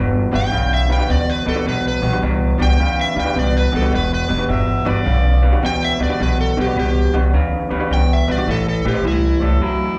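Blues with a mournful, brooding swing, heard as a live club gig through the venue's sound system, a short piece cut from a longer performance that sits on Em7 before shifting to Am7 at 8.5 seconds. A slightly broken-up, lo-fi electric guitar through a small old amp carries the riff up front with harmonic tremolo and slapback echo, beside a woody pizzicato upright bass, while a bright, slightly detuned upright piano with audible action noise comps in the background. A dark, overdriven slide guitar sings the melody from 0.4 seconds, and a mellow harmonica with scooped notes and light vibrato adds a brief second line at 4.5 seconds and returns at 9.4 seconds, coloured by overdrive and tape echo.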